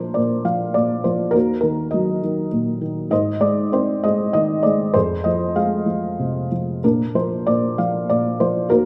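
A close, intimate felt-muted upright piano sits up front in a moderate recital-hall reverb, its thick felt giving soft, dark notes with short sustain. This lyrical classical solo moves in a rubato three-beat lilt with a sunny mood, ranging from Eb2 to F5 through chords of Bb, Ebm, Ab and Fm before returning to Bb. The 8.9-second fragment is cut from a longer piece.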